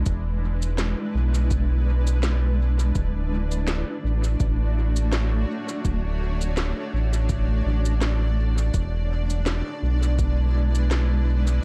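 A cloudy granular pad and a round analog bass open this hazy, spacious ambient dub excerpt together at once, settling on an E7 chord in E mixolydian at a relaxed 83 BPM in 4/4 with a gentle swing on the sixteenths. The pad holds sustained, detuned chords that blur and evolve with a slow attack, long release and its own built-in reverb, giving it a mellow, full-bodied haze. Sitting up front, the bass is deep and dark, its sine-and-sawtooth tone striking with a fast attack and holding its notes low in the register. Electronic drums join almost immediately: a woody snare and cabasa trailing dub echo and carrying the air of a large room, and a deep, layered, overdriven kick tucked into the background that drops out at 10.3 seconds. The harmony moves to Dmaj7 at 3.0 seconds and returns to E7 at 8.7 seconds, all within a dark, warm production that otherwise keeps reverb to a minimum.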